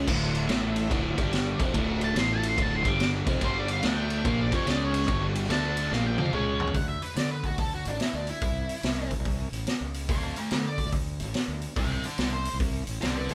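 A swung 4/4 groove drives this gritty, raunchy blues rock and southern rock excerpt from a power trio playing live in one room: a punchy vintage kit with dark cymbals and a high-tuned snare sits up front beside a double-tracked crunchy riff guitar and a very quiet, thick organ through a slow rotary speaker, both of which stop at 6.8 seconds, while a round fuzz bass holds the bottom, an octave-fuzz lead guitar carries the melody from 2.0 seconds, and a smooth second lead slips in behind it at 13.0 seconds, all under light reverb.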